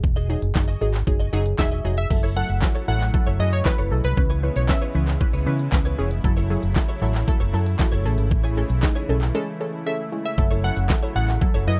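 A straight 4/4 dance-pop groove at 116 BPM drives this bittersweet excerpt in F# dorian, anchored by an overdriven pop kit with knocking kick, fat snare, crisp hats, handclaps and crash, and a round, foam-muted vintage fingered bass that pumps with the sidechain, both up front. A detuned analog pluck with chorus and phaser plays accompaniment alongside a clean, direct-recorded electric guitar riff, while a second, evolving analog pluck carries the melody with tape echo from 1.6 seconds and a lush, airy supersaw pad pumps softly in the background from 2.1 seconds over chords moving from Emaj9 through F#m7, C#m7 and Amaj7. A brief break arrives at 9.3 seconds, and the dark production keeps little reverb, so the sound stays dry.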